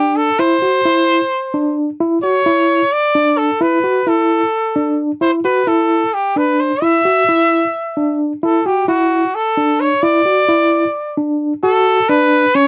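A trumpet melody and electric piano arpeggios begin together, setting a bright, driving progressive instrumental in an asymmetric 7/8 with a straight feel. The trumpet carries the tune as a punchy, vintage-toned solo voice in a pop style, with light vibrato and a warm edge, sitting up front in the mix. Beneath it, a clean tine electric piano plays arpeggios through a combo amp, its fast tremolo adding a shimmering pulse while it also stays close and forward. The harmony rests on a Dadd9 chord before moving to Bmadd9 at 11.6 seconds, where a short new section begins. The sound is dry and close, in the manner of a 1970s studio recording with a modest booth ambience, and this brief fragment is cut from a longer piece.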